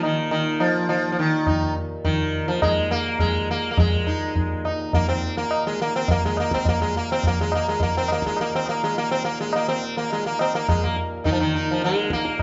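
A steady 4/4 pulse at 104 BPM moves with a straight feel through this Hindustani classical excerpt in raga Durga on Eb, its mood meditative and radiant. The sitar carries the melody up front from Eb3 to Eb4, its plucked tone buzzing and shimmering with sympathetic strings. Beneath it, a pedal harmonium holds a reedy, breathing drone between Eb2 and Bb2, mellow and set in the background. The tabla sounds high-tuned, close and dry, each stroke giving a short ring. All three parts play together from start to finish across the 12.4 seconds, captured live in one room with a large, wet studio reverb and a soft top end, as a short slice cut from a longer performance.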